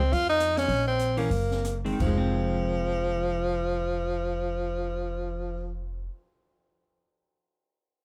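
This is a short cut from a small-group jazz piece in the swing and bop tradition, set in F minor with a smoky, moody air, a swung 4/4 feel and a tempo between 160 and 224 BPM that slows over the first 2 seconds. A bright, punchy tenor saxophone carries the solo melody up front, its forceful, vibrato-laden tone lifted by plate reverb. Beside it, a woody pizzicato upright bass on steel strings anchors the low end, while an open acoustic drum kit adds dark cymbals, hi-hat, rim clicks, a high-tuned snare, a boomy kick, crashes and a cymbal swell. A vintage hollow-body electric guitar enters at 1.2 seconds with clean, picked accompaniment in a dusky tone, arriving over Gb and moving toward an Fm7 at 2.0 seconds. The room sound is natural and lightly reverberant, wrapping the group in a smoky atmosphere.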